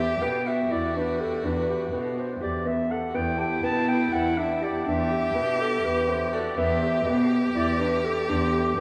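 A mellow clarinet carries the melody in a classical solo style, sitting up front yet with a distant, roomy colour. This pensive, restless piece of contemporary chamber music moves in an uneven 7/8 metre with a straight feel, and this short cut from a longer work rests on a single chord throughout. Beneath the clarinet, a clear viola bowed by one player holds a smooth, even second line with vibrato, while a concert grand piano supplies intimate arpeggios with deep bass, long sustain and audible action noise. A muted cello played con sordino anchors the bass with a dark, veiled tone, soft attack, vibrato and portamento. Between 3.4 and 5.7 seconds a very quiet glockenspiel struck with rubber mallets adds soft, bell-like ringing high above, and the ensemble sits in a vast, echoing space with a huge ambient reverb lasting 8.0 seconds.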